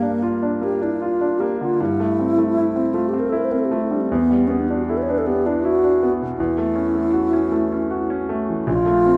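Hazy and wistful, this impressionist classical duo moves at 78 BPM in a rubato 3/4, with a hollow, pure alto flute carrying the melody over a clear concert grand piano that sits up front with deep bass and a smooth, vintage character. The flute's tongued notes and vibrato float through chords drifting from Gm7 through Am7/G, Em7 and F#m7/E before settling on Bbmaj7sus2 near 8.7 seconds. A wet recital hall reverb surrounds both instruments in this brief fragment cut from a longer piece.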